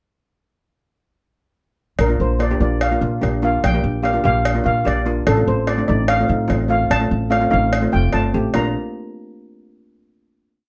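A shimmering lead steel pan, played with medium rubber sticks and sitting up front in a boxy small room, carries a motif-based melody of hook phrases through this short, carefree and festive calypso with a light sixteenth-note swing. Beneath it, bright, dry cello pans played with hard rubber sticks sound full, rhythmic triad chords. A woody, growly pizzicato upright bass on steel strings plays a syncopated figure, and a metallic cowbell keeps its pattern in a live room. The four parts come in around 2.0 seconds, and the piece settles onto a final chord at 8.5 seconds, captured with close, detailed microphones and light reverb.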